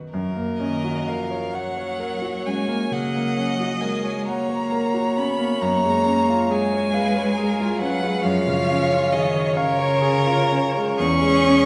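An open, up-front concert grand piano begins this serene, lyrical fragment of a slow romantic piano-quartet movement in F# major, its deep bass anchoring the accompaniment in a rubato 12/8 at roughly 41-47 BPM. A smooth, even violin joins as a second line at 0.1 s, then a rich, focused violin takes the melody with vibrato at 0.6 s, as a clear cello adds its own bowed second line beneath. The harmony moves from F# to C#/F# and reaches C#m/E near 11.0 s, all set in a wet recital hall heard from further back, with a softened, dulled top end.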